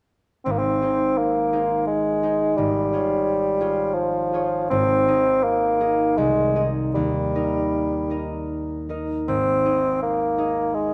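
Serene and gently glowing, this short classical passage from a longer piece is a romantic duo for bassoon and concert harp in Ab major, moving in 3/4 at roughly 76-88 BPM with a flexible rubato feel. The bassoon carries the melody from 0.5 seconds, its warm tone shaded with a light vibrato and placed up front in a soloistic, classical style. Beneath it, the fingerpicked harp supplies the accompaniment across a broad register, its acoustic strings ringing clearly and also sitting close to the listener. The harmony drifts from Ab through Db over Ab, back to Ab, then Ab over C and Eb before settling on Ab again at 9.3 seconds. A lush scoring-stage reverb wraps both instruments in a spacious, resonant halo until the passage ends at 10.9 seconds.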